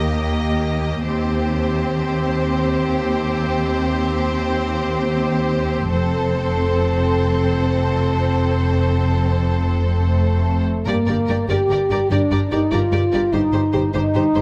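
Adventurous and determined, this heroic film-score passage moves at 98 BPM in a straight 12/8, cut from a longer piece. A bowed violin section carries the melody with lush vibrato, while a second violin line, focused and smooth on top, moves beneath it and a viola section fills the accompaniment. A tight French horn section holds sustained chords in classical style, and the bass is grounded by a rich cello section alongside a dark, woody double bass section with light vibrato. The music builds from the opening through 10.9 seconds over chords of Eb, Cm/Eb and F, then turns toward Gm and Cm/G in the closing stretch to 14.4 seconds. Close, detailed microphones and light reverb give the ensemble a clear, present sound.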